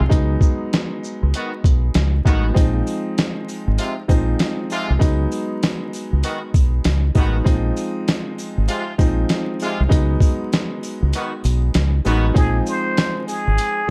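Boom-bap hip-hop with a dark, moody cast, this cut from a longer piece rides a swung 16th-note groove over alternating Db9sus4 and Bb9sus4 chords. A dusty, sampler-style drum kit sits up front with a thumpy kick, fat snare, hi-hat and shaker, compressed and gritty with the air of a large room, beside a round, punchy dub-style electric bass. An intimate, woody upright piano with audible action noise fills in the harmony alongside filtered, slapback-echoed horn stabs that enter at 1.4 seconds, played by a loose, vintage-sounding section with soft attacks and vibrato, while jingly sleigh bells stay close and dry in the background. The kick drops out at 11.1 seconds, and at 12.4 seconds a close-miked plunger-muted trumpet enters with the melody, raspy and growling with wah-wah inflections, scooped notes and light vibrato. The mix is dry, with little reverb, and a layer of vinyl crackle runs underneath.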